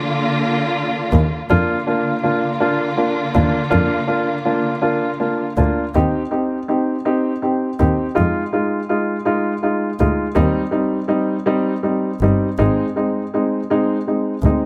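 A moderate echo-chamber reverb gives this tender, heartfelt six-eight pop ballad fragment a roomy glow. A woody upright piano with audible action noise and short sustain carries the accompaniment throughout, while a studio string section adds smooth-topped, expressive sustained chords with vibrato and portamento until 5.9 seconds. From 1.1 seconds, a bowed, con sordino double bass sits close and up front, its dark, veiled tone shaded by vibrato as the harmony moves from Eb6 through Fm7 to Ab.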